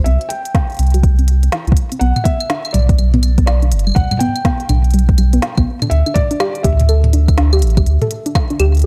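Playful and glitchy, this short IDM excerpt swings through a dark, dry production, with a deep, round sine sub bass sitting up front beneath a warbling, dusty pluck whose detuned, lo-fi arpeggios carry chorus, delay and a filter sweep across the whole passage. A soft, felt-muted upright piano with audible action noise plays a mellow, intimate melody dressed in vintage 12-bit sampler grit and delay. An electronic drum kit of claves, crisp hats, woody snare and toms, re-recorded in a large room, is joined by a tape-warm kick that enters at 0.5 seconds, while the harmony moves from C to G and settles on Dsus2 at 5.9 seconds.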